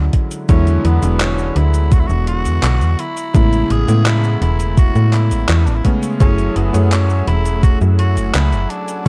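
A straight 4/4 pulse at 84 BPM comes from a thumpy, overdriven electronic kick sitting up front, alongside a gated 80s digital drum machine that adds cabasa, handclaps and hi-hat through gated reverb and overdrive, both re-recorded in a small room. This melancholic, hazy vaporwave fragment in F# minor, cut from a longer piece, rests on a snappy FM slap-style bass with a metallic attack, also up front, and a bright electric grand piano whose clangy, vintage tone carries a subtle chorus as the harmony moves from E9 to Amaj9. From 0.5 seconds a raspy tenor saxophone takes the solo melody, gritty and punchy with vibrato and an analog delay on its pop-style line. At 6.2 seconds, as the chords settle on F#m9, a lush, detuned unison pad of sawtooth and square waves arrives with a slow attack and chorus in the background. The production has a dark, cassette-tape character wrapped in digital ambience.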